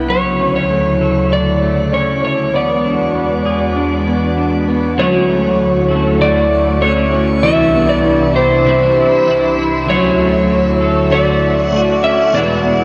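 Dream pop, blissful and dreamy, cut from a longer piece: a hollow, flute-like pad with chorus holds mellow sustained chords up front while a twangy, slightly broken-up electric guitar plays arpeggios through ensemble chorus and digital delay, a dark, compressed slide guitar carries the melody up front with its own delay, a clean semi-hollow electric guitar with tremolo and lush chorus joins in the background at 5.0 seconds, and a reversed, swelling granular texture with built-in reverb and delay enters at 6.5 seconds, the whole mix bathed in a long shimmer reverb and the warbling pitch drift of worn cassette tape.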